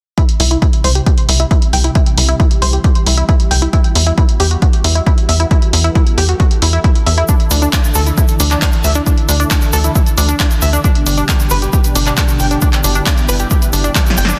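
Driving 135 BPM uplifting trance in 4/4 opens with a punchy, layered kick up front, while an analog drum machine adds claps, hi-hat and a punchy snare in a short small-room ambience, and a tight, nasal sequencer bass pumps against the kick through the chords C, Emadd9, Dsus2 and G. Over it, a plucky sawtooth arpeggio synth with chorus and tape echo and a silky, wave-folded string pad in the background both pump to the kick and carry filter sweeps that lend the passage an emotional, soaring lift. A grainy, close egg shaker joins at 7.3 seconds, and a drum fill at 14.0 seconds caps this dense, heavily limited fragment of a longer piece.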